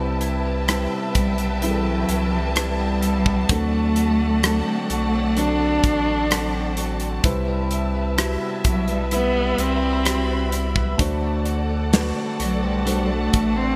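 A slow, straight 4/4 pulse at 64 BPM carries this melancholic pop ballad excerpt, set by an acoustic drum kit of kick, snare, hi-hat and rim click that sits up front with a tight kick and medium-tuned snare from 0.2 s. A deep, round sub bass holds the low end with sustained sine tones, while a felt-muted upright piano plays soft, mellow accompaniment, its thick felt and audible action noise giving it an intimate feel. A distant studio string section holds lush sustained chords high above, with vibrato and portamento, and a bright, twangy clean electric guitar picks compressed arpeggios in the background, bathed in chorus and delay. At 1.2 s a single dark, bowed cello enters with the expressive melody, its smooth tone shaped by vibrato and portamento. The harmony alternates between Cmaj7 and D7 under a lush hall reverb and a bright 1980s-style digital sheen, creating an emotional mood.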